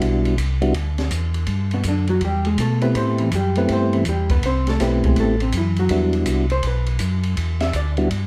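A flute-like, percussive tonewheel organ carries the melody over a round, mellow organ bass line, both up front with slow rotary speaker, while an acoustic jazz kit with dark cymbals, a high-tuned snare and a boomy kick swings in the background; a clean, compressed hollow-body electric guitar enters at 1.7 s to comp through Em7, Am9 and back to Em7 in this smoky, bluesy soul jazz organ trio fragment with light reverb.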